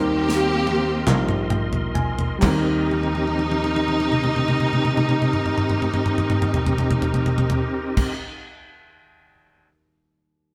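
A lush, bowed symphonic string section leads this slow, soulful gospel excerpt in 6/8, carrying an expressive, close melody with soft attacks and vibrato at roughly 41-53 BPM in Eb major. Beneath it, a tight funk drum kit sits up front with a high-tuned snare, a tight kick, toms and crash cymbal, entering at 0.3 seconds with fills through the opening and again from 2.9 seconds. A reedy tonewheel organ holds sustained chords through a fast rotary speaker and chorus vibrato, with audible key click. A dry, punchy thumbed slap bass with a foam-muted tone anchors the low end, while a dark, worn baby grand piano plays accompaniment from the background, its action noise and boxy character audible, adding a fill as the opening slows. Hollow, vintage-sounding group handclaps join at 1.1 seconds, and the hopeful performance, played live in one room, is bathed in a stone-room reverb, with the piano the last to sound, ringing until 10.5 seconds.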